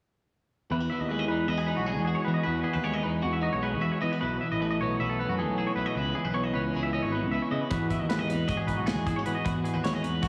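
This math rock and midwest emo excerpt moves in a brisk 9/8 at 309 BPM counted in eighths, carrying a bright, intricate mood in E major. A bright, clean twelve-string electric guitar lays down the accompaniment while a twangy, fingered electric guitar spins high arpeggios up front, coloured by tape echo and slapback echo. Beneath them, a fuzz-toned picked electric bass adds punchy, overdriven weight from the start at 0.7 seconds. The harmony cycles through Emaj9, B7sus4 and C#m7 before returning to Emaj9, and a modern studio drum kit with a dark, rolled-off top, tight kick and medium-tuned snare joins at 7.7 seconds with hi-hat, kick and snare. The whole sits in a big, arena-like space with a moderate concert hall reverb around the compressed, forward guitars.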